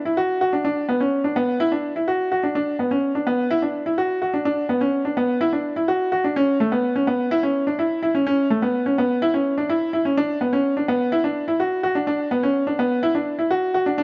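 Cinematic and moving, this electronica excerpt at 126 BPM in B minor features a lone upright piano, clear yet worn and woody with a slightly detuned, up-front character, playing between A3 and F#4 from 0.1 to 14.0 seconds within a moderate echo-chamber reverb.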